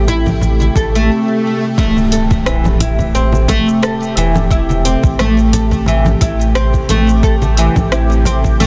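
A dense, heavily limited mix with light digital reverb carries this earthy, hypnotic organic downtempo fragment, cut from a longer piece: a woody, plectrum-plucked fretless oud plays arpeggios up front through delay and a filter sweep that runs until 1.8 seconds, over a round sine sub bass and a detuned sawtooth pad with chorus, both pumping with sidechain, while a metallic bronze singing bowl rings barely audibly until 1.1 seconds, an overdriven soft electronic kick and an overdriven electronic kit of cabasa, congas, smooth hi-hat and rim click set a swung 4/4 pulse beside close, dry congas and bongos in the background, and a background swell gives way to an impact at 1.8 seconds.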